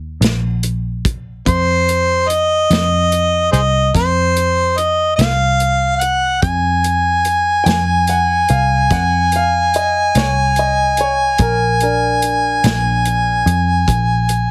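Slow blues in a straight 12/8, soulful and gritty, opening on a dark, foam-muted picked electric bass with a tight, roomy soul drum kit close behind, before an overdriven harmonica enters at 1.5 seconds to carry the melody up front with light vibrato, tongue slaps and scooped notes. A woody upright piano with audible action noise and tape echo adds a soft second line from 7.6 to 13.4 seconds. Light reverb and heavy multiband compression give the whole cut a gritty radio sound, and it ends on a Bb7 chord, clearly lifted from a longer piece.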